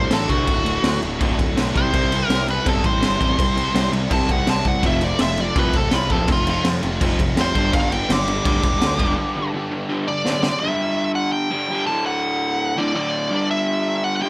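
Energetic and rowdy, this punk rock excerpt at 166 BPM in 4/4 opens with a nasal, overdriven lead guitar with a parked wah and digital delay soloing up front over two bright, double-tracked crunchy rhythm guitars (one up front, one in the background), a growly fuzz bass that drops out at 9.1 seconds for a break, and a raw, saturated garage drum kit with a boomy kick, high-tuned snare and dark cymbals in a small pumping room, whose fill ends at 10.5 seconds, leaving the lead guitar and the up-front rhythm guitar to carry the closing passage until 14.3 seconds in a dry, close mix.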